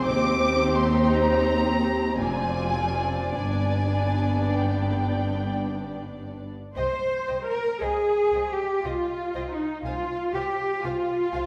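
Classical music for string orchestra, this slow romantic movement in C minor moves in a rubato 3/4 at around 51-61 BPM, cut from a longer piece and carrying a solemn, melancholic mood. Muted violins carry the melody high above, with a soft attack and smooth top, while a second violin section sings a lush, close line beneath them. Con sordino violas fill in the accompaniment with light vibrato, and the cellos, placed up front, join the double basses in the bass, all bowed and veiled in a dark, muted tone. The harmony passes from C minor through a half-diminished chord to G before the second section opens on C minor at 6.8 seconds. A wet recital hall reverb wraps the ensemble in a soft, lingering bloom.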